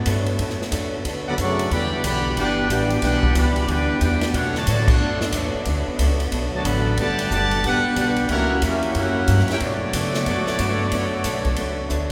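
Brassy and swinging, this big band jazz excerpt in B minor moves at a brisk 182 BPM, with a woody, growly pizzicato upright bass and a drum kit of dark cymbals and punchy kick driving it from the start, while a dark, clean hollow-body electric guitar comps in the background and a very quiet saxophone section holds sustained chords. At 1.3 seconds a bright trumpet section with light vibrato takes the melody, joined at the same moment by a mellow, soft-attack trombone section on a second line, and the full band hits an accent at 4.8 seconds as the harmony moves from Bm9 through Em9, Gmaj7 and F#7b9. The whole ensemble sits in a wet church reverb, and a drum fill at 11.9 seconds closes the passage.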